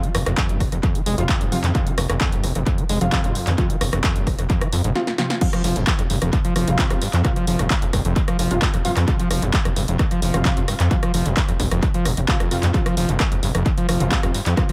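An echo-heavy mix with light reverb and digital ambience carries this driving, relentless peak-time techno excerpt in F minor at 131 BPM. An overdriven, up-front kick sits under a gritty sawtooth synth bass with oscillator sync and sidechain pumping, while a punchy analog drum machine supplies crash, handclaps, hi-hat, rim click and snare with tape echo. A squelchy, resonant acid bass riff with distortion, analog chorus and dub echo sits in the background, joined from 1.2 seconds by thick, detuned rave stabs carrying 12-bit sampler grit and built-in reverb, and a drum fill at 5.0 seconds leads into the drop at 5.4 seconds.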